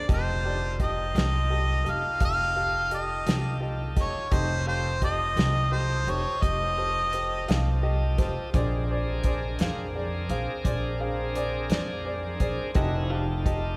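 Laid-back yet rollicking, this slow blues in 12/8 moves at 57 BPM with a straight feel, cut from a longer piece and set in the moderate reverb of a church or concert hall. An overdriven harmonica carries the melody up front, clear and smooth-topped, with vibrato and scooped notes in a jazz-style solo that ends at 7.8 seconds. Beneath it, a bright tonewheel organ holds full, shouting chords through light overdrive and a slow rotary speaker. A clear baby grand piano adds accompaniment, and a woody, thumpy upright bass on gut strings sits up front with pizzicato lines. A dry, dark soul drum kit with a fat snare, tight kick, hi-hat and a rolled-off top keeps the groove as the harmony moves from F9 to Bb9 at 8.5 seconds and back to F9 at 12.8 seconds.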